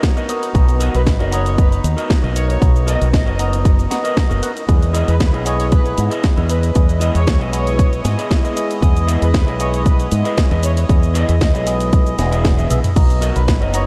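Sunny and feel-good, this nu-disco excerpt rides a punchy, up-front electronic kick and a house kit with a cracking snare, hi-hat, shaker, crash and toms, both tape-tinged and re-recorded in a large room, under a bright, envelope-filtered fingered electric bass with tube saturation; a bell-like tine electric piano with phaser and a dark, clean electric guitar riff with lush chorus share diffuse ambient delay, rich, reedy chamber strings hold very quiet sustained chords, and a distant, woody violin section carries a soft-edged melody in the background, with guitar fills at 3.7 and 7.8 seconds and a drum fill at 12.6 seconds.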